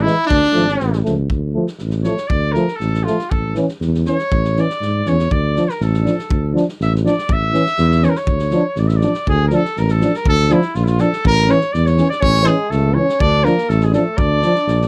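In a straight two-beat pulse that keeps speeding up, this fiery, restless Balkan brass band passage puts a clear, lightly vibratoed trumpet up front for a solo from 1.3 to 9.3 seconds over a close-miked, mellow tuba bass, a warm, roomy euphonium and a smooth-topped trombone in the accompaniment, a nasal, straight-muted French horn that sounds at the start and returns at 12.2 seconds, and a loose, gritty drum kit with punchy kick and medium-tuned snare, set in a dry 1970s-style studio sound.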